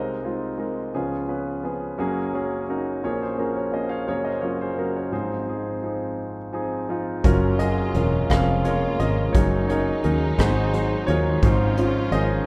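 A slow 6/8 pulse at 57 BPM, felt in dotted quarters, carries this heartfelt, nostalgic folk-pop ballad in Db major, where an up-front concert grand piano with deep bass sings the melody alone until a piano fill at 6.2 s leads the rest of the band in at 7.2 s. There a vintage brush kit with a punchy kick, hi-hat and rim click, a round, foam-muted fingered electric bass, and a woody, bowed chamber string section holding sustained chords with vibrato join through changes like Gbmaj7, Db6/F, Gb69 and Ab7, settling on Dbmaj9/Ab. The whole piece sits in a moderate concert hall reverb and is cut from a longer piece.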